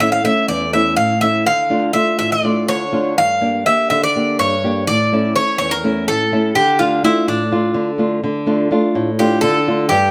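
Driving and intense, this brief cut from a longer Greek folk piece in 7/8 sets a bright, metallic bouzouki up front on the melody, its picked double strings, some doubled at the octave, carrying a touch of plate reverb, over a dark, small-sounding fingerpicked nylon-string guitar accompaniment moving through A, Dm and Gm, the band steadily speeding up across all 10.1 seconds in a moderately reverberant studio room.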